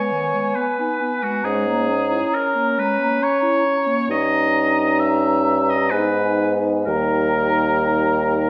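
Set in a stone room with a lingering reverb, this solemn, melancholic slow movement for wind quintet unfolds in G# minor at 61-69 BPM in a rubato 3/4, taken from a longer piece. A hollow, soft-attacked silver flute sings the melody with vibrato between G#5 and A#5, while a clear oboe with light vibrato carries a second line and the French horn and dark clarinet fill in the accompaniment. At 1.4 s a mellow, smooth-topped bassoon enters up front on the bass line as the harmony moves from G#m through A#m7b5/G# and D#7/G before closing on D#.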